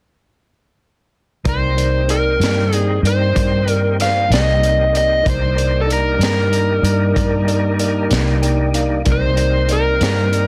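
Tine electric piano and a smooth tonewheel organ with slow rotary speaker and chorus vibrato open this mournful, smoky slow blues in C minor at 63 BPM in 12/8 at 1.4 s, where the clean piano sits in the background beneath an up-front overdriven slide guitar melody played with fingerpicks, a round, punchy foam-muted electric bass and a gritty, saturated breakbeat kit with a high-tuned snare and tight kick, all in a dry, dense, heavily limited mix, with a brief electric piano fill at 8.1 s in this excerpt from a longer piece.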